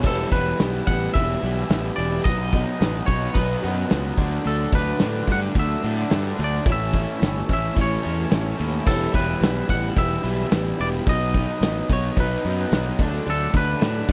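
Cool and bittersweet, this indie rock excerpt in E dorian moves at 109 BPM in a straight 4/4 over an Em, B, D, A progression, with a loose acoustic drum kit with dark cymbals and a punchy kick sitting up front beside a growly fuzz bass, a crunchy overdriven guitar riff with analog chorus, a lo-fi, slightly broken-up guitar riff through a small old amp with spring reverb in the background, a clean, twangy lead melody with subtle chorus entering at 0.1 seconds, and a buzzy vintage combo organ holding very quiet sustained chords, set in studio reverb.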